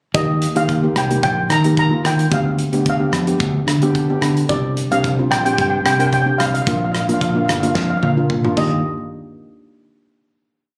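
Bouncy and sunny, this short calypso piece in Eb major moves at 110 BPM in a straight 4/4. A steel pan of double seconds, struck with medium rubber sticks, carries an airy, up-front melody built from motifs in sentence-like phrases, with a slapback echo trailing its shimmering, metallic tone. A second steel pan, cello pans played with soft rubber sticks, sits close and dry beneath it, offering mellow, full syncopated triads. A bright fingered electric bass drives a punchy syncopated figure, while an acoustic studio drum kit keeps a calypso groove with kick, medium-tuned snare, rim clicks, hi-hat, crash and toms, adding a drum fill from 7.8 seconds. The harmony passes from Eb through G7/D, Csus2 and Bb back to Eb, and the piece closes on a final hit at 8.8 seconds, all heard as if captured on a phone in the room, with club reverb, compression and moderate studio reverb.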